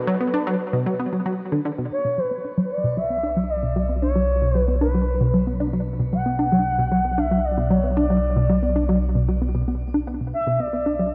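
A moderate plate reverb gives this short cut of cosmic, expansive space music a spacious glow, with a tight, driving sequenced synth riff of detuned sawtooth and square waves, filter-plucked and bathed in chorus and analog delay, pushing forward from the first second. Over it, a dark, smooth portamento lead sings an expressive melody with vibrato, wrapped in subtle chorus, shimmer reverb and analog delay. At 3.1 s a nasal analog drone enters low beneath them, its pulse-width modulation and moving notch keeping the sustained bass slowly evolving under tube saturation.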